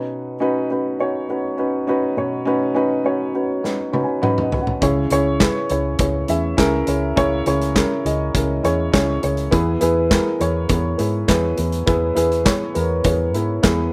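A dark, woody upright piano opens this piano-driven pop excerpt alone, its mellow, slightly detuned tone up front with audible action noise, and it plays a fill alongside the drums at 3.6 seconds as the loose indie kit enters with handclaps, hi-hat, a tight kick, a medium-tuned snare and toms in a pumping small room. A round, punchy, foam-muted electric bass joins at 4.8 seconds, and the earnest, bittersweet piece moves at a straight 102 BPM in 4/4 through Badd9, C#m and E, with little reverb for an intimate, close sound.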